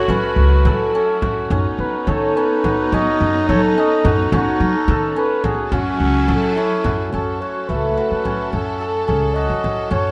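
Contemporary instrumental chamber music in 5/8 at 214 BPM in eighths, this short cut from a longer piece in F# dorian feels restless and pensive. A mellow flugelhorn carries the melody in a jazz style, its vibrato and scooped notes giving a smooth top, while a growling clarinet plays a raspy, gritty second line until 6.8 seconds. Up front, a hammered cimbalom spins shimmering, ringing arpeggios. Beneath them, a pizzicato upright bass with steel strings sounds woody, and a deep, large frame drum sits close and dry in the background. A distant, lush symphonic string section holds clear, focused, bowed chords moving from F#m7 through Badd9/F# and F#m9, with a new section beginning at 7.1 seconds. The recording is close and detailed, with little reverb.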